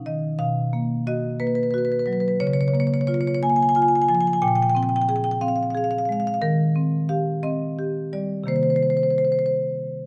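In a steady, straight 6/8 at 60 dotted-quarter beats per minute, this hypnotic, reflective fragment of a contemporary classical piece for solo marimba unfolds over about 10.1 seconds. Played with medium hard mallets, the marimba sounds dark and smooth and sits up front, spanning Bb2 to Ab5 as the harmony moves through Bmaj7#11, Db6, Bbsus2, Eb6 and Cm7. Close, detailed microphones and a light reverb keep the instrument's tone intimate and clear.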